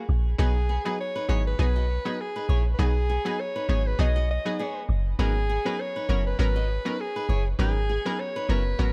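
Afrobeats at 100 BPM with a gently swung 16th feel, this breezy, sunny excerpt rests on a single G#m11 chord while a breathy alto saxophone with vibrato and a smooth top carries the melody, its tape echo matched by a fingerpicked flamenco guitar riff with fresh strings. A deep, round log drum bass sits up front with a dark, percussive punch from 0.1 s. A warbling, vintage analog pluck with chorus and a filter sweep adds bright accompaniment from 0.4 s, all set in an echo-heavy studio reverb.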